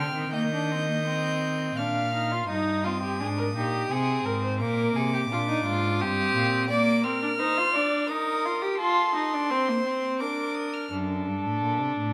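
Serious and contemplative, this short baroque-style fugue in triple time for string quartet sets a reedy, gut-strung first violin with light vibrato singing high above a dark, nasal second violin and a rich viola accompaniment, while the period-style cello bass falls silent at 6.7 seconds and returns at 10.9 seconds as the opening material comes back, all carried by a moderate recital-hall reverb.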